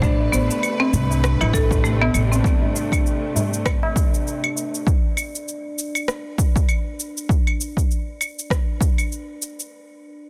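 A punchy, overdriven electronic kick drum sits up front in this organic downtempo excerpt in A minor, moving at 99 BPM in 4/4 with a swung 16th-note feel, and it carries on until 8.9 s. Layered electronic shaker, claves and rim click, also overdriven, run to the end, while a high-tuned acoustic tabla with a short ring adds percussion from a small room. At the start, a dark, woody pizzicato upright bass with steel strings sits up front with sidechain pumping, and a buzzing hardwood marimba struck with hard mallets plays dry, vintage-toned arpeggios through tape echo, both stopping at 2.4 s. A lush, bowed studio string section holds sustained Amadd9 chords with vibrato, a smooth top and sidechain pumping, before the harmony falls away at 4.9 s. A bronze singing bowl rings with a metallic, slow-beating shimmer, giving the warm, mystical mood a meditative glow within a dense, heavily limited modern master with light reverb.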